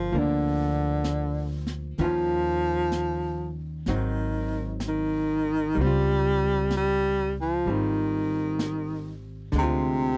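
Jazz ballad at a slow 64 BPM in 4/4 with a swung feel, wistful and smoky, where a clear baritone saxophone with vibrato carries the melody up front over dark, compressed hollow-body archtop guitar chords, woody, thumpy pizzicato upright bass on gut strings and a brushed drum kit entering at 0.1 seconds, through changes such as Gm7, Ab7 and Dbmaj9#11 in a dry, close 1970s-style studio sound with light reverb, cut from a longer piece.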